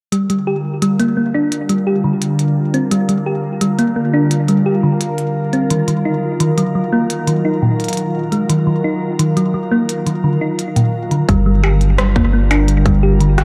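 A tine-like, thumb-piano-style synth pluck spins Gm7 and Ebmadd9 arpeggios through chorus, cassette-tape wear and analog delay, floating over a glassy, ethereal FM pad; both parts are drawn through filter sweeps in this eerie, cerebral IDM excerpt at 86 BPM. A glitchy, overdriven kit of clicky hats, percussion blips and rim clicks sits further back, its hits trailed by analog delay. At 11.3 seconds a round, dark analog bass on G1 and a tight, overdriven electronic kick arrive up front, inside a moderate plate reverb.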